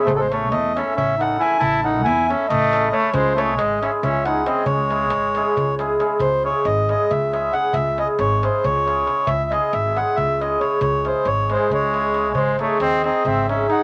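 Fiery and virtuosic, this Balkan wedding-band excerpt drives along in 7/8 at 274 BPM counted in eighths, with a straight feel in C# harmonic minor, cut from a longer piece. A reedy, round accordion sits up front carrying the melody throughout, while a mellow trumpet with light vibrato and a classical-style tone plays a second line, dropping out at 5.8 seconds and returning at 11.5 seconds. Beneath them, a hammered cimbalom rings and shimmers as accompaniment, and a growly, woody pizzicato upright bass on steel strings anchors the low end. A crisp metal-shell darbuka, close and dry, supplies the percussion. The harmony moves from A to C# minor and later to G#, the music shifting into a new section at 6.2 seconds, all set in a moderate studio reverb.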